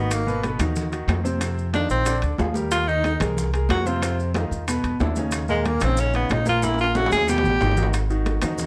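A straight 4/4 groove at 184 BPM drives this short, fiery cut of Afro-Cuban jazz in Eb minor, taken from a longer piece and carrying a sophisticated edge. The tenor saxophone sits up front with a punchy, scooped, lightly vibratoed solo line that stays smooth on top. Beneath it, the upright bass is thumpy and woody, plucked on steel strings, while the baby grand piano adds clear, intimate accompaniment with audible action noise. The percussion fills in behind: ringing high-tuned congas with a vintage, band-limited tone, metal-shelled timbales, very quiet tight bongos, faint woody claves and grainy maracas. A drum fill arrives at 6.6 seconds, and the saxophone stops at 7.9 seconds as the harmony lands on an Ab7 chord with its third omitted. The close, detailed sound carries light reverb.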